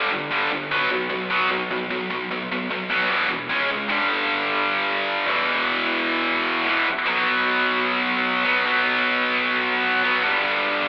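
Aggressive and heavy, this rock excerpt features a lone high-gain electric guitar, bright, distorted and double-tracked, picking power chords up front with a slapback echo in a straight 4/4 pulse. The chords move from G5 through B5, E5 and C#5, and at 3.9 seconds the part shifts into a new section that moves through G5, E5 and B5 before returning to G5 near 10.2 seconds. It sounds like a live gig heard through the venue's PA, with the boxy, narrow tone of a telephone line and a light recital-hall reverb around it.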